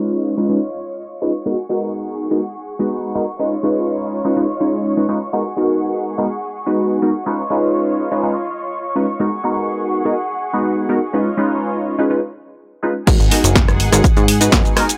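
Groovy and funky, this filtered disco house excerpt moves at 124 BPM in a straight 4/4, set in G# dorian and alternating between C#9 and G#m7. A funky polysynth comp carries the accompaniment up front from the start, its detuned, mellow chords coated in chorus and phaser and pumping against the sidechain under a low-pass filter. Behind it, a clear symphonic string section holds sustained chords with light vibrato and a smooth top, roughened by vintage 12-bit sampler grit. A filter sweep runs through the opening 13.1 seconds, with a brief break beginning at 12.1 seconds before the drop. At 13.1 seconds a tape-warm, layered electronic kick, a plucky ring-modulated analog bass and a punchy analog drum machine arrive together, the machine supplying snare, hi-hat, rim click, shaker and crash from a small-room re-recording. The whole mix has a dry, gritty hardware character with transformer saturation and light reverb.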